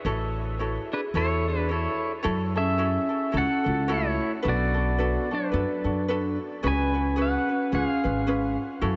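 Sunny and languid, this short Hawaiian excerpt sways at 109 BPM in F# minor with a gentle swing, as a fingerpicked ukulele and a woody, thumpy upright bass played pizzicato on gut strings hold the ground from the start. At 0.9 seconds a twangy, compressed pedal steel guitar takes the melody up front with fingerpicks, slide and volume swells, while a vibraphone struck with medium mallets, motor off, adds a smooth, dark, ringing second line. The whole mix is dreamy and soaked in huge ambient reverb, its top end softened, as the chords drift from A6 through F#m7 and Bm7 to C#7sus4 and C#7.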